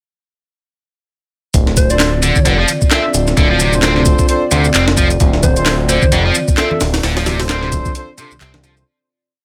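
Breakbeat at 131 BPM in D minor, energetic and funky, with a gritty, compressed looped break that has a thumpy kick and high-tuned snare, plus a tape-toned machine layer of shaker and clap and, from 5.2 seconds, very quiet, close and dry congas. A fat, detuned sawtooth bass plays long gliding notes up front beneath a deep, moody pad that pumps with sidechain compression. A bright, high-gain guitar repeats a 32-step riff, a clear brass section adds syncopated close-voiced stabs, and a round, warbling FM lead with AM-radio grit and delay drops in for short phrases before the piece fades out from 6.4 seconds.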